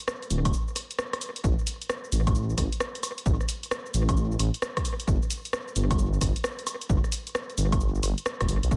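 Skippy and moody, this excerpt of two-step UK garage at 132 BPM swings its sixteenths over a punchy analog drum machine of cabasa, hi-hat, rim click and woodblock trailed by analog delay, a dark, detuned sawtooth bass rumbling between D1 and B1 from 0.3 seconds, and an electronic kick arriving at 0.5 seconds, with a break from 0.5 to 1.4 seconds in a dry, echo-heavy mix.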